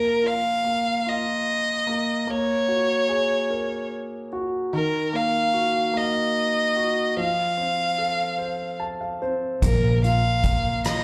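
In six-eight time, this dramatic, aching pop ballad, cut from a longer live performance heard through a club PA, sets a rich, vibrato-laden solo violin melody with slapback echo over a clear, intimate concert grand piano with audible action noise and long sustain, which plays a fill at 8.4 seconds before a dark, round, foam-muted electric bass and a soft-mallet drum kit with boomy kick, hi-hat and rim click enter at 9.6 seconds.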